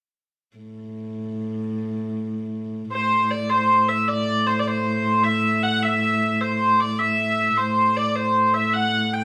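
A steady, straight 6/8 pulse at 103 BPM in dotted quarters drives this short medieval piece in A dorian, tuned slightly below modern pitch at A4 = 439 Hz, with a mood both driving and mysterious. A single viola da gamba opens at 0.6 seconds, holding a drone on A2 with a soft attack, light vibrato and an airy, ringing bow that sounds intimate and close. At 2.9 seconds a hurdy-gurdy joins with the melody, ranging from C5 to G5 in a clear, smooth and even voice that sits louder than the drone. The wheel-bowed, keyed tone of the hurdy-gurdy carries a slightly distant quality even as it stays up front. The two players perform live together in a large studio with a wet reverb, and the piece breaks off at 9.2 seconds, cut from a longer work.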